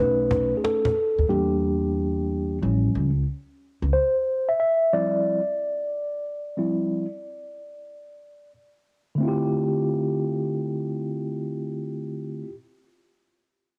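Swung sixteenths in 4/4 drive this nocturnal, cool jazz-hop fragment, where a woody, close and dry cajon with faint snares and hard hands appears only from 0.3 to 1.2 s, a pizzicato upright bass with steel strings sits up front until 3.9 s, and a mellow, clean tine electric piano, colored by cassette tape like the cajon and heard through its built-in speakers, takes a solo over B7, Em7b5, A7b13 and Dm11 before carrying on alone, the whole room bathed in moderate spring reverb with a homespun cassette character.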